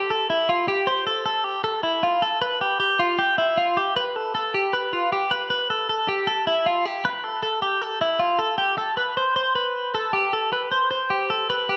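A clean, compressed twelve-string electric guitar sits up front and plays a picked solo line between E4 and C5 in this breezy, youthful indie pop excerpt in C major at 156 BPM in a straight 4/4, its tone coloured by spring reverb and tape echo within a moderate studio room and a dark, warm production, with a new section arriving at 8.6 seconds before the clip ends at 11.8 seconds.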